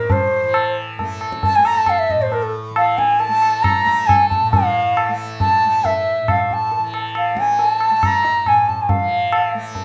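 A bright, reedy bamboo bansuri with airy vibrato carries the melody up front over a softly plucked, buzzing tanpura drone, joined at 0.1 seconds by high-tuned, ringing tabla, in this introspective, solemn Hindustani classical piece in raga Todi on A, set in 5/4 at 137 BPM and speeding up throughout, with wet studio reverb wrapping the rough home-demo mix.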